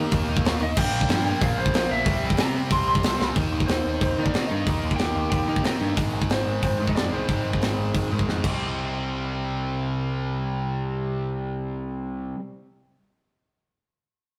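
A twangy, slightly broken-up lead guitar with digital delay leads this upbeat, rebellious punk rock excerpt at 183 BPM, soloing from the start until a drum fill at 3.2 seconds, and carrying the melody until 8.3 seconds over a bright overdriven guitar riff, a sludgy guitar sitting in the background, and a growling, direct-amped bass. A tight metal kit with bright cymbals, a high-tuned snare and a tight kick sits up front until another fill at 8.3 seconds, after which the two riffing guitars and bass carry on alone. The chords move through Eb, Bb5, C5 and Ab, and the rough rehearsal-room recording has a stone room reverb and saturated character.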